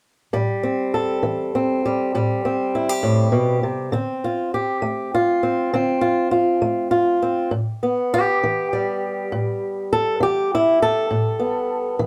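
A boxy, up-front fingerpicked acoustic guitar plays alone in swing style through this brief, soulful and brooding country blues fragment in 12/8, moving from Am7 to Dm7 before settling on A7sus2 at 7.5 s, all within a modest small-room ambience.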